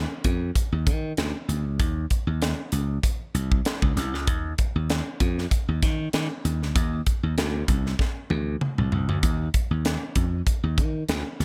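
A lightly swung sixteenth-note groove in 4/4 drives this glossy, breezy slice of polished 1980s jazz-funk pop, where a bright, growly slap bass sits up front alongside a crisp fusion drum kit of hi-hat, punchy kick, high-tuned snare and toms with gated reverb, the drums kicking off a fill at 8.0 seconds.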